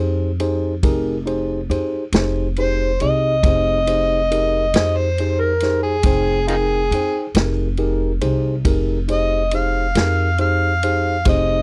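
Soulful and smoky, this slow blues excerpt in F minor moves at 46 BPM in a straight 12/8, resting on a single Fm9 chord. A worn, slightly out-of-tune tine electric piano plays clean, direct accompaniment from the start, alongside a woody, thumpy upright bass plucked on gut strings, placed up front. A vintage acoustic drum kit enters at 0.4 s with a punchy kick, a medium-tuned snare and ride cymbal, its top end rolled off for a natural studio-room sound. At 2.6 s an amplified, overdriven harmonica takes the jazz-style solo, gritty and up front, with light vibrato, tongue slaps and scooped notes, carried by a slapback echo. The sound is dry and close, in the manner of a 1970s studio recording.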